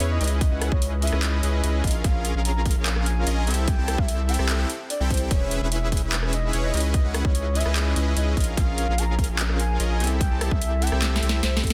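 Bright and playful, this short future bass excerpt moves at 147 BPM in 4/4 with a half-time feel, its supersaw, sub bass and lead pumping under sidechain compression. A soft, detuned supersaw riff and a deep, saturated sine sub bass play from the start, while a trap kit with a sharp snare, metallic hats, handclaps and rim clicks adds overdriven grit, joined at 0.4 seconds by a hard-clipped electronic kick sitting up front. A round, octave-layered synth lead with a soft attack and vibrato carries the melody from 0.1 seconds, tucked into the background and colored by chorus, phaser and delay. The harmony cycles through chords such as C#m9, A#m7, C6 and E6, and a drum fill arrives at 11.0 seconds. The mix is dry, dense and heavily limited in a modern style.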